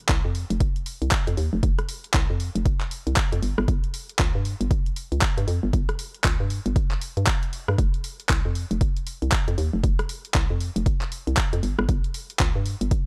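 Deep and late-night in mood, this deep house excerpt runs at 117 BPM in 4/4, with a 61% swing on the sixteenths and tuning set to A4 = 441 Hz. A hollow, knocking FM bass carries the low end from F1 to G2, its bouncy tones striking with a fast attack and then decaying, while sidechain pumping gives it a breathing motion. Alongside it, a punchy, layered electronic kick sits up front, joined by a produced deep house drum kit of handclaps, hi-hat and rim click. All three parts play together from the opening moment until roughly 13 seconds in, holding one unbroken groove throughout. The sound is dry and gritty, with little reverb, giving it the close, raw character of a hardware recording.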